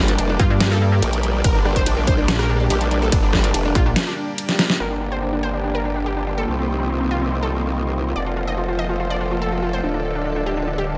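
A heavy, pulsing wobble bass with saturated chorus anchors the opening seconds of this chaotic half-time dubstep excerpt at 143 BPM in G minor, driven by a punchy, tape-warm electronic kick and an up-front drum kit of deep snare, metallic hats, ride cymbal and rim click that stops at 4.8 seconds, while an aggressive, growling bass with overdrive, a bright, detuned unison pluck melody through digital delay, and a lush, sidechain-pumped supersaw pad carry on throughout, joined at 6.1 seconds by a cloudy granular pad in the background as the chords move from Gm through Cm and F to Dm.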